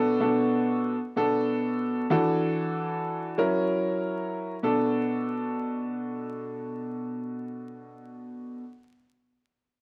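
A lightly swung 4/4 groove at 95 BPM drives this short hip hop cut from a longer piece, its sixteenths pushed with a 55% swing. The mood is dark and tough, set in B minor, with an upright piano as the sole instrument, playing accompaniment from 0.0 to 8.6 seconds across a range from B2 to A#4. Its tone is warm, woody and boxy with a long sustain, sitting up front in the mix and shaped by high-pass and low-pass filtering. The harmony moves from Bm7 to E9sus4 and F#7 before returning to Bm7 at 4.6 seconds, where a second section begins. Light reverb, a small room ambience and a layer of vinyl crackle round out the recording.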